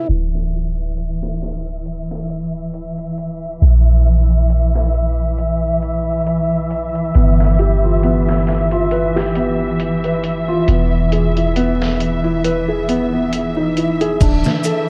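Hypnotic and smoky, this trip hop excerpt moves at a slow 68 BPM with a gentle swing, its dark production dusted with vinyl crackle and a filter sweep across chords from Dsus2 through G7 to Emaj7. Veiled, con sordino strings hold lush sustained chords up front over a deep, round 808-style bass and a muffled, pitched-down sampler drum kit with a thumpy kick, while a very quiet granular texture flickers high above. A soft, mellow felt-muted upright piano takes up arpeggios from 7.1 seconds, roughened by 12-bit sampler grit and tape echo, and saturated maracas with handclaps appear at 14.2 seconds.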